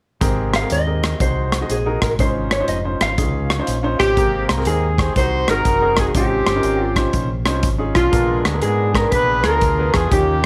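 A swung 4/4 groove at 121 BPM drives this soulful, reverent uptempo gospel excerpt in Ab major, with an up-front acoustic drum kit of tight kick, hi-hat and rim click over a deep, round, punchy fingered electric bass. A clear grand piano, intimate with audible action noise and long sustain, supports chords such as Abmaj9, Dbmaj9 and Bb7b9, while a mellow, dark, compressed electric guitar carries the melody from 0.6 seconds. At 4.0 seconds a pop-style horn section with light vibrato and a smooth top joins the melody, with light reverb and studio ambience around the band.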